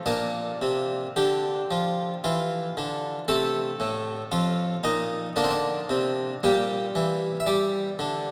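Heard up front and close, an Italian-style harpsichord sounds brilliant, plucked and full, its octave strings ringing into a long cathedral reverb. This solemn, flowing baroque-style suite movement in 3/4 is a short cut from a longer piece, with the solo harpsichord spanning F2 to E5 under a rubato feel. Its harmony moves from Bb at 0.1 seconds to F at 3.3 seconds, then settles through Bb/D and Gm/Bb.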